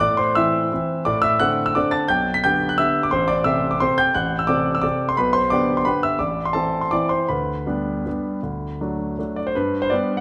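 The recording places a solo concert grand up front in a recital hall, where a wet reverb adds a generous bloom and the faint noise of the piano's action stays audible. This short passage, cut from a longer classical piano waltz in 3/4, is playful and graceful, its supple rubato letting the pulse breathe. The piano's tone is clear and polished, with deep bass giving weight beneath a range that climbs high into the treble, and notes ring with long sustain. The harmony returns again and again to A minor, passing through a diminished chord and a dominant before resolving to G at 9.6 seconds. Intimate and present, the playing feels like a private performance heard from the front row.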